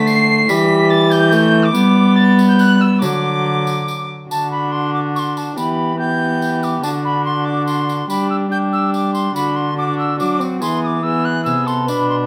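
A classical, Renaissance-style consort dance in 3/4 at 142 BPM, this excerpt from a longer piece moves with a courtly, stately bearing in D mixolydian over a straight pulse. A bright soprano recorder carries the melody in a high register, its airy, woody tone marked by a soft attack with chiff, gentle vibrato and expressive, close-miked intimacy. Alongside it a dark violin sings a second line with a nasal, gut-string period sound that sits a little distant, while a single bowed viola supplies accompaniment with a warm, smooth, reedy voice placed up front. A dark cello anchors the bass with the same period gut-string character, and a jingly tambourine taps along softly in a small room. The harmony circles through Em, G and D before the later phrases settle on E near 10.6 seconds, all under a light reverb.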